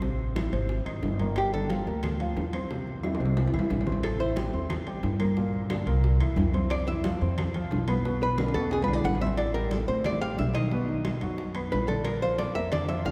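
Afro-Cuban jazz at a brisk 180 BPM with a sophisticated, sunny mood, this excerpt sets a dark, clean, picked hollow-body archtop guitar up front for short melodic phrases at 1.4 and 4.0 seconds before carrying the line from 6.7 seconds, over a deep-voiced concert grand piano with short sustain, a woody pizzicato upright bass on steel strings, distant bright congas, very quiet round low-tuned bongos, ringing metal-shell timbales, vintage band-limited claves in the background and drum fills, all bathed in a long church reverb.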